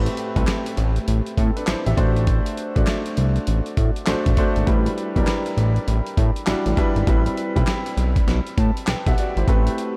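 This slick, bouncy new jack swing excerpt opens with a clear baby grand piano and a fat analog bass sounding together, the drums arriving at 0.1 seconds. The tempo sits at 100 BPM in 4/4 with a swung sixteenth-note feel, and the harmony moves from Am9 through D7/A, Em7/A and Cmaj7/A over an A in the bass. The bass is thick and saturated, a detuned sawtooth tone with a plucky filter and an evolving, sustained body, while the sampler-style kit brings a gritty, compressed character with a thumpy kick, a medium-tuned snare, hi-hat and handclaps, re-recorded in a small room. The piano, natural and up front, plays a fill from 8.3 to 9.5 seconds before the bass drops out at 9.7. A huge ambient reverb soaks the mix, giving this R&B groove a dreamy haze.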